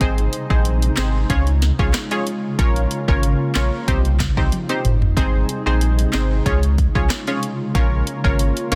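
A punchy, bright sawtooth chord stab with a filter pluck and chorus drives this tough, hypnotic dancehall excerpt at 93 BPM, cycling through Ab, Db, Bbm and Cm over a deep, round sine sub bass, an up-front electronic afro-pop kit of deep kick, sharp snare, hats, claps, rim clicks and toms with a fill at 4.5 seconds, and an ethereal, airy detuned pad carrying ensemble chorus, reverb and sidechain pumping, all in a dense, heavily limited modern mix.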